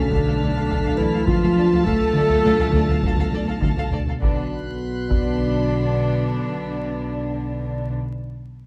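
Close, detailed microphones, light reverb and vinyl crackle frame this ominous, mysterious suspense cue in 5/4, cut from a longer cinematic score. Soft-attack sul tasto strings lead: a dark violin section carries the melody in the background, a classical solo clarinet and a rich, floating violin section shape second lines, a very quiet viola section and distant, roomy French horns supply accompaniment and sustained chords, and double basses join a warm cello section on the bass while a second cello section plays a riff until 4.1 s. A mellow, warbling analog drone with chorus sits underneath, a delicate, tinkling music box glints only until 2.7 s, a high violin section adds pure texture, and heavy-stick taiko drums strike dry until 5.4 s as the harmony moves from Dm to Bm.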